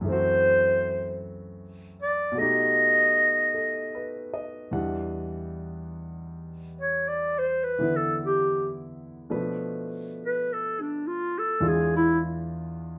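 Wistful and melancholic, this slow jazz ballad in E minor moves at 52 BPM in 4/4 with a lazy swing on the eighth notes, and it is cut from a longer piece. A breathy clarinet carries the melody up front, its mellow, whispered tone shaped by light vibrato, soft attacks and scooped notes that give it a vintage, intimate jazz character. Beneath it, a clear concert grand piano sits lower in the mix as accompaniment, natural in tone with a deep bass. The harmony drifts through F#m7b5 and B7b13 before settling on Em9, then moves on through Bm7b5 and E7b9. From 4.7 seconds the clarinet takes a solo, and it falls silent at 12.2 seconds while the piano rings on briefly. A wet studio reverb lends some space, though the overall mix has the rough feel of a home demo.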